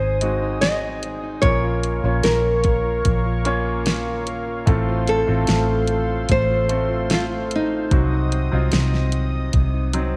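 A moderate echo chamber gives this short cut from a longer piece a roomy, lingering sheen, with a reverb tail of about 2.3 seconds. It is a melancholic, emotional pop ballad in Bb minor at a slow 74 BPM in a straight 4/4, moving through Ab, Bbm, F/A and Cdim. A small, fingerpicked nylon-string guitar carries the melody, its finger squeak audible and its notes doubled by a slapback echo, while a clear, polished baby grand piano supplies the accompaniment. A warm analog pad holds sustained chords in a high register, its detuned sawtooth tone warbling under chorus, and a full-bodied plugged-in steel-string acoustic guitar fingerpicks arpeggios in the background. Up front, a dark, foam-muted vintage electric bass sits round and punchy, joined from 0.2 seconds by an electronic R&B drum kit with a soft kick, a fat snare and warm hi-hats.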